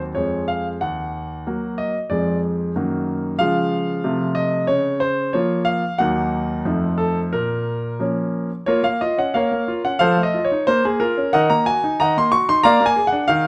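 In a straight 2/4 at 91 BPM, this elegant, serious classical-period piano sonatina settles into B-flat minor from 3.4 s, its harmony moving through chords such as E-flat minor, F7 with a flat ninth and B-flat minor before closing on B-flat 7. A solo grand piano with a clear, natural, up-front tone spans the whole excerpt from Eb2 to Db6, with an opening section giving way to a second section at 8.7 s. The piano sits in a moderate large-studio reverb with a softened top end, and the excerpt is cut from a longer piece.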